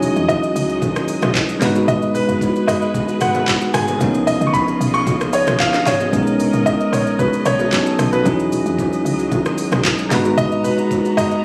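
A straight 4/4 groove at 113 BPM drives this warm, relaxed amapiano piece, where an electronic, tape-warm drum kit with knocking kick, sharp snare, smooth hi-hat, handclaps, rim click and shaker sits under a punchy, woody log drum bass, while a clean, bell-like tine electric piano plays accompaniment up front, a grand piano with short sustain carries a delayed melody, a dark, lush bowed string section holds vibrato chords that pump with sidechain, and distant congas and bongos ring softly in the background until 11.0 s, the mix sounding as if caught on a phone in the room as the chords move from Emaj13 through C#13 and Bmaj13 to G#m9.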